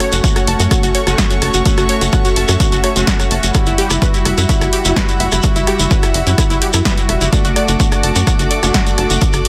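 Melodic techno at 127 BPM in F# phrygian, this hypnotic, melancholic excerpt from a longer piece moves in a straight 4/4 through F#m, Emadd9/F# and D/F# chords. An up-front, tape-warm electronic kick leads the low end alongside a punchy analog drum machine playing hi-hat, rim click and snare, while a grainy, compressed shekere adds texture from 0.1 s. A tight, driving sequencer bass built from sawtooth and square waves with ring modulation pumps against the kick, and a lush, detuned unison pluck spins bright arpeggios through digital delay. Bold, fat analog synth brass stabs, thickened with chorus, vibrato and a filter sweep, sit in the middle register, also pumping and echoing. A soft, distant string section holds sul tasto chords in the background, and from 2.0 s a very quiet, tense bowed-like drone sustains F#4 with a long release. Light reverb and digital ambience frame the mix.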